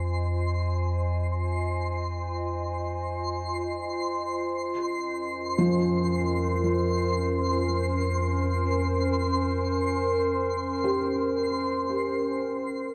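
Serene and reflective, this ambient excerpt in free time opens with a warbling, nostalgic tape-like pad fading in on sustained Fm7 and Bbmadd9/F chords over a deep, ominous rumbling drone and a twinkling, bright granular shimmer, before a soft, felt-muted upright piano with tape echo enters with intimate arpeggios at 5.6 seconds, all bathed in a wet cathedral reverb and the worn pitch drift of old cassette tape.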